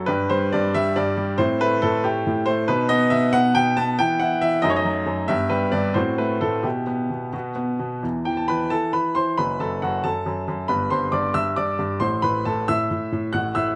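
Close, detailed microphones and light reverb frame a clear, intimate baby grand piano, up front with audible action noise and long sustain, as it plays a cheerful, playful classical-period sonatina alone in 6/8 with rubato, moving through two statements of its opening section, the second beginning at 8.0 seconds, before this fragment of a longer piece breaks off at 13.8 seconds.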